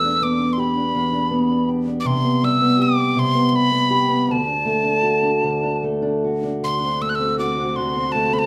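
A breathy, close-miked tin whistle with an unsteady vibrato and a tongued chiff sings the melody of this nostalgic, wistful Celtic slow air in a rubato 3/4, over a dark, woody fingerpicked archtop guitar on old strings, while a focused, distant bowed string section enters in the background at 6.6 s, heard within a moderate recital hall reverb.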